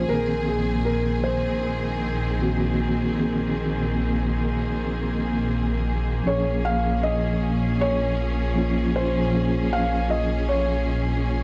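Melancholic and hypnotic, this trip hop fragment at 78 BPM with a swung sixteenth feel sets a soft, felt-muted upright piano melody, trailed by tape echo, over a tremolo-shaded tine electric piano, clear, bowed studio strings holding sustained chords with vibrato, and a deep, rumbling detuned saw bass pinned on Bb1 up front, all moving from Abadd9/Bb to Bbm7 at 6.2 seconds in a small room with a dry, gritty hardware saturation.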